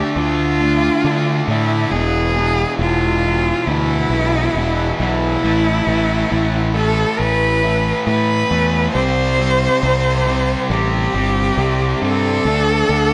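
Post-rock with a brooding yet cathartic mood, cut from a longer piece, moving at a slow, straight pulse through a chord sequence in A minor. A clear, focused cello carries the melody with vibrato and a slapback echo, its bowed tone slightly boxy, over a fuzz guitar riff that is bright, double-tracked and compressed. From 0.2 seconds a growling fingered electric bass adds overdriven grit up front, all set in a moderate large studio reverb with a touch of small-room ambience.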